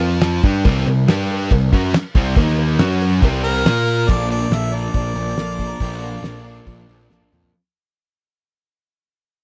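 A straight 4/4 classic rock groove, sunny and confident, rides on a damped 70s drum kit with a fat snare and tight kick up front, a round fuzz-picked electric bass, and a cowbell in the background. A bright, double-tracked distorted electric guitar, a hollow-toned overdriven semi-hollow guitar and a sludgy distorted guitar stack up riffs, while a harmonica with light vibrato and slapback echo carries the melody from 3.4 seconds. A very quiet picked steel-string acoustic guitar joins as the dry, close 1970s-style sound begins to fade at 4.1 seconds, a dark octave-fuzz lead guitar follows at 5.4 seconds, and this excerpt closes on a drum fill at 7.1 seconds.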